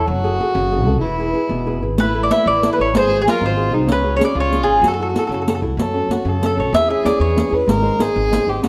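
Heard in a moderate recital-hall reverb, this passionate, wistful fragment of a longer Italian folk serenade in F# minor sways in a rubato 6/8 at 127 BPM. An up-front, round, double-strung picked mandolin carries the melody until 7.5 s over an earthy, smooth-topped bowed violin second line with light vibrato, a warm fingerpicked flamenco guitar accompaniment and a woody, thumpy pizzicato upright bass. A close, dry riq with dark jingles joins at 2.0 s, and a new section begins at 5.8 s.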